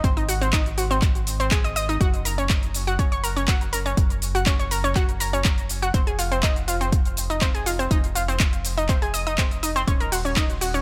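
Driving and expansive, this progressive house excerpt moves at 122 BPM in a straight 4/4, with chords shifting from Ab7 to Gb, Fm7 and Ebm7 over its 10.8 seconds. An up-front, nasal analog pluck spins bright, wave-folded arpeggios through chorus, dub echo and sidechain pumping. Beneath it, a tight, punchy sequencer bass pumps in the low register, while a deep, overdriven electronic kick and a layered deep house kit of cabasa, handclaps, metallic hi-hats and ride cymbal drive the dry mix.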